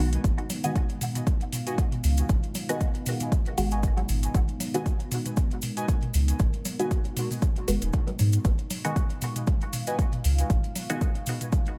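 Nocturnal and deep, this dub techno excerpt moves at 117 BPM in G# dorian, resting on a single G#m7 chord as a round, soft sub bass pumps alongside an overdriven, up-front kick beneath a dark, warbling pad with built-in reverb and vintage 12-bit grit. Muted, detuned chord stabs colored by phaser and dub echo sit alongside a nostalgic, lo-fi synth keys riff that enters at 0.6 seconds, while metallic overdriven hi-hats, dry tape-toned electronic congas and toms, and a grainy cabasa tucked in the background fill out the swung groove. The mix is echo-heavy with little reverb overall.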